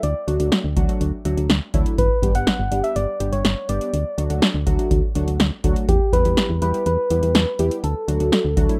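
A dry analog drum machine with a deep kick, punchy snare and metallic hats opens this nostalgic, bright synth-pop piece, alongside a dark, up-front FM bass and a gentle, keys-like FM lead carrying the melody with vibrato, chorus and delay. At 0.3 seconds, sawtooth analog keys join in accompaniment, colored by a filter sweep, chorus and phaser, as the chords move between D, G and Em. The whole has the light reverb and rough feel of a home demo mix.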